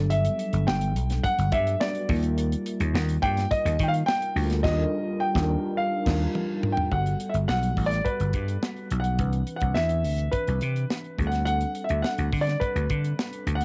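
A mellow tine electric piano and a growly, punchy slap bass open this upbeat, urban slice of polished 1980s jazz-funk pop in G major, moving at 106 BPM in a straight 4/4. The electric piano carries the accompaniment with a clean tone coloured by analog chorus and cassette tape, while the amped bass sits up front. A concert grand piano takes the melody almost at once, its present tone short in sustain and deep in the bass. A tight funk drum kit with bright cymbals, a medium-tuned snare, a tight kick, hi-hat, crash and toms gives an airy, dry pulse, also touched by cassette tape. The harmony moves from Gmaj9 to Ebmaj9, and the band hits accents from 4.6 seconds, capped by a drum fill that leads into a second passage at 6.9 seconds, where the chords run through Gmaj9, Cmaj9 and D7sus4. A small room reverb and a home-cassette character frame this excerpt from a longer piece.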